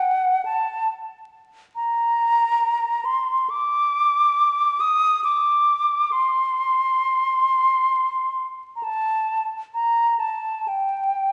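Meditative and mournful, this brief classical excerpt is an expressive piece for unaccompanied concert flute in free time. The solo flute plays from 0.0 to 11.3 seconds, staying in a high register between F#5 and Eb6. Its tone is hollow and airy, with vibrato and a crisp attack, and it is close-miked and up front. Around it, a generous recital-hall reverb lends the sense of hearing from further back in the room. Vinyl crackle and a top end that stops at 10.7 kHz give the recording a dusky, aged character, and the passage is cut from a longer work.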